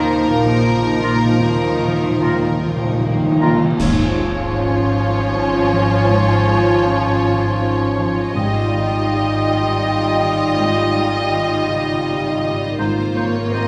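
Swaying in a rubato 6/8, this moving, hopeful cinematic orchestral cue sets a clear, floating violin section's melody over rich cellos, dark, woody double basses and gentle violas, while a second, softer violin section, an airy and distant flute ensemble, a punchy solo oboe and a warm clarinet add second lines, the oboe and clarinet entering at 1.0 seconds. A felt-muted upright piano with audible action noise, a quietly ringing fingerpicked harp and very quiet French horn chords fill in the background, all bathed in a wet recital hall reverb. Soft-mallet timpani open with a round fill, and bright cymbals with a concert bass drum swell in at 1.4 seconds before a band accent at 3.8 seconds.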